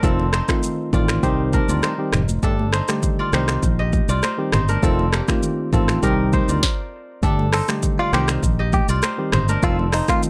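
Afrobeats at 100 BPM with a hypnotic, smooth feel, cut from a longer piece: a worn, slightly out-of-tune tine electric piano comps over a punchy fingered bass and an up-front, electronic afro-pop kit with a deep kick, sharp snare, crisp hats, finger snaps, rim clicks, shaker and toms, while very quiet, high-tuned congas with a thin, damped skin sit far back. A bright, ringing, fingerpicked kora riff with tape echo runs throughout over chords moving among F7, Cm and Gsus2, and the groove stops briefly from 6.6 to 7.2 seconds. After the break, a twangy, compressed clean electric guitar recorded direct carries the melody from 7.5 seconds, all in a dry, close sound.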